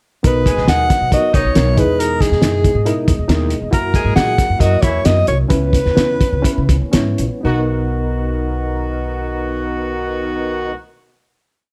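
A breathy, close-miked alto saxophone carries hook phrases up front in this short, joyful piece of 1960s-style soul, over a cloth-damped, gritty drum kit's backbeat, a woody pizzicato upright bass line, a reedy, worn electric piano with tremolo and a fill at 3.1 seconds, a mellow tonewheel organ pad on slow rotary speaker and short riffs from a smooth horn section, slowing down from 3.7 seconds into a held final chord at 7.4 seconds.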